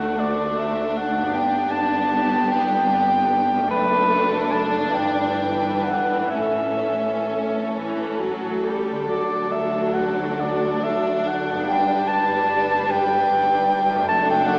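This serene, tender slow romantic movement for symphony orchestra, cut from a longer piece, opens with the whole ensemble sounding at once in D major, in a rubato 6/8 at roughly 40-52 BPM. A mellow, punchy cor anglais stands up front with a lightly vibrato second line, while a dark, expressive violin section carries the melody in the background and a clear, intense, distant violin section adds another lush bowed line. Rich viola accompaniment, a cello and double bass bass, and ringing fingerpicked concert harp arpeggios set in the background complete the texture, all bathed in a wet scoring-stage reverb heard from further back in the room with a small-speaker sound.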